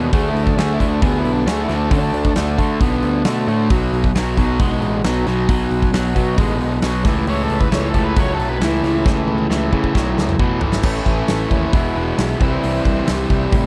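A straight 4/4 groove at 134 BPM drives this swaggering, driving classic rock excerpt, with a huge, punchy arena drum kit up front beside a bright, crunchy overdriven guitar riff, a sludgy, warm distorted guitar playing a riff and a growly, direct picked electric bass, while a very quiet, gritty tonewheel organ holds thick chords through a slow rotary speaker and a dark octave-fuzz lead guitar with slapback echo adds a second line in two short bursts, at the start and again from 7.3 seconds, before a drum fill at 9.1 seconds leads into a closing section, heard in a dry, close 1970s-style studio sound.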